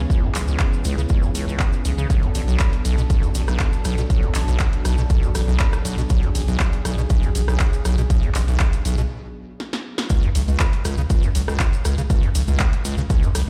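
Acid house at 120 BPM in C# phrygian, trippy and gritty, where a squelchy, resonant square-wave acid bass riff with filter sweep, chorus and tape echo rides over a round sine sub bass, a punchy up-front electronic kick, a tape-warm analog drum machine of congas, handclaps, hi-hat, rim click and snare, a grainy cabasa in the background, and a smooth, detuned, warbling analog pad holding C#m7 and Bm7 chords under sidechain pumping until it stops at 10.1 s, when a break from 9.1 s and a drum fill from 9.6 s give way to a drop on a C#5 chord in a big, reverberant room.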